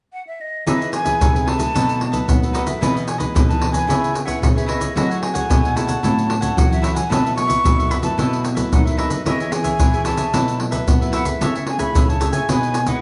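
A breathy, expressive jazz flute with vibrato and a soft attack opens this festive, playful samba and choro excerpt in E major at 112 BPM, and at 0.7 s it is joined by a bright, crisp picked cavaquinho, two fingerpicked classical nylon-string guitars in the background (one comping chords like Emaj7, C#m7 and F#m9, the other carrying the bass with fresh strings and audible finger squeak), and an up-front, vintage-toned percussion section of tube shaker, deep surdo and softly played pandeiro, all heard as a band playing live in one room with lush large-studio reverb.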